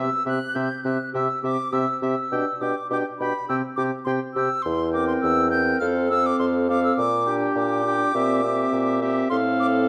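A lively, graceful classical-period wind quintet movement at a quick 103 BPM in 4/4, cut from a longer piece and settling into F major from 4.7 s, in which a pure, up-front concert flute with vibrato and soft attacks carries the melody, a warm oboe sings a second line, a mellow French horn and a distant clarinet in the background fill in the accompaniment, and a smooth-topped bassoon anchors the bass up front, all in the wet ambience of a recital hall.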